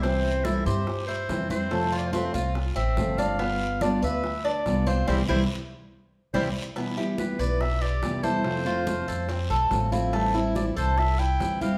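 Cuban son and guajira at 142 BPM in C major, this relaxed, sunny passage cut from a longer piece features a clear, classical-style solo clarinet carrying the melody over a fingerpicked steel-string acoustic guitar with audible finger squeak and the metallic, double-stringed arpeggios of a Cuban tres. A woody, thumpy pizzicato upright bass sits up front, bright high-tuned congas and round, low-tuned bongos with a compressed, saturated edge stay in the background, and a raspy guiro sounds close and dry, all played live together in a large studio room with wet reverb. The band hits a shared accent from 5.1 to 6.8 seconds before the harmony moves through E minor, F and A minor seven.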